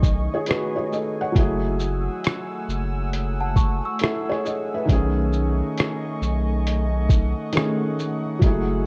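A lazy 68 BPM lo-fi hip hop groove in 4/4, swung on the sixteenths, rides a compressed, pitched-down sampler-style kit of thumpy kick, rim click, hi-hat and shaker, with a thick saturated sub bass sitting up front beneath a felt-muted upright piano whose soft, intimate accompaniment carries audible action noise and a cassette-tape grain. A detuned, warbling pad sustains chords from behind through chorus and its own reverb, while a bright, bell-like celesta slips in a delicate second line between 3.4 and 4.9 seconds, trailed by tape echo. The harmony drifts from B13 to F#m9 and back. Light reverb and the wavering pitch of worn old tape give this short, reflective excerpt its nostalgic haze.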